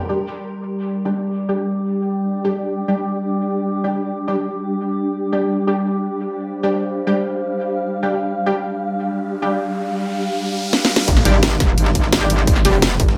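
This tense, futuristic stretch of dark technical drum and bass at 172 BPM opens at 0.0 s on a swarming, granular drone and bold, punchy orchestra-hit-like synth stabs with phaser and dub echo, both under filter sweeps, joined by a warbling, nostalgic tape-like pad with chorus. An electronic riser enters in the background at 9.7 s, and a drum and bass kit with a cracking snare plays a short fill before the drop. At 11.1 s an impact lands with a distorted, layered electronic kick, a very quiet, gritty breakbeat sampler-style kit and a thick detuned saw bass, and an aggressive, metallic FM wobble bass follows up front at 11.3 s, all set in light digital ambience.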